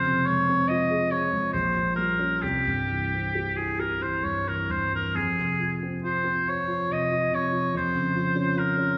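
A 3/4 pulse, pulled and stretched with rubato, carries this elegiac, melancholic fragment of a romantic classical duo for oboe and grand piano. The oboe sings the melody with a clear, vibrato-laden tone that feels distant and roomy, while the grand piano supplies a dark, mellow accompaniment with an intimate, vintage character and audible action noise. Both parts sit up front in a wet concert-hall reverb that lingers for about 2.0 seconds.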